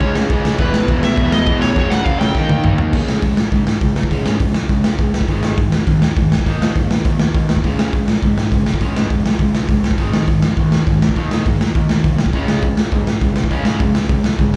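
This rowdy, upbeat punk rock excerpt sounds like a live club gig heard through the venue's PA, with a raw, up-front garage drum kit that is saturated and gritty, with a punchy kick, a medium-tuned snare and a rolled-off top. At a straight 204 BPM in 4/4, the opening passage pairs a smooth overdriven lead guitar melody, touched with slapback echo, against a very quiet, double-tracked crunchy overdriven guitar riff, and both drop out by 2.9 seconds after a drum fill. Two distorted electric guitars sit in the background playing riffs: one compressed and running through the whole clip, the other also carrying slapback echo and returning at 12.3 seconds. A growling picked electric bass, direct and amped with overdrive, holds the low end throughout. The chords move among Db5, Ab5 and Eb5 power shapes, giving the section after 2.9 seconds a driving, repetitive push.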